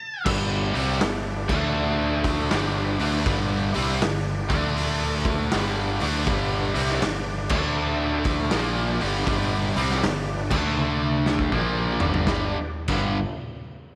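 Raunchy and gritty, this excerpt of swung blues rock with a southern rock lean moves at 80 BPM in G major, trading between G and D5 chords under a double-tracked, overdriven stack guitar riff that sits up front with a bright, picked edge. A round, fuzzed fingered electric bass and a saturated garage drum kit with a punchy kick, medium-tuned snare and pumping stone-room sound drive it along, the drums throwing in a fill from 10.8 to 12.3 seconds as the chords move to G5, then settle on G once the fill ends. Very quietly behind them, a lightly overdriven tonewheel organ holds sustained chords through a slow rotary speaker with audible key click, all set in a light studio reverb.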